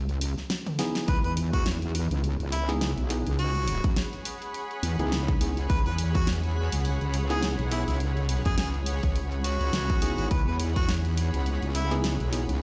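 A heavy, saturated wobble bass sits up front from the start of this playful, funky glitch hop excerpt, moving at 104 BPM with a swung 16th feel in C# minor over a C#m7 chord. A pop drum kit with a fat snare, hi-hat and toms plays a short fill before a punchy electronic kick arrives at 1.1 seconds, alongside a vibrato-laden harmonica melody with scooped notes, 12-bit sampler grit and tape echo. A worn, slightly out-of-tune tine electric piano adds pumping stabs, while from 2.5 seconds a cloudy, evolving granular pad drifts high above, all heard in a bare stone room on a big sound system.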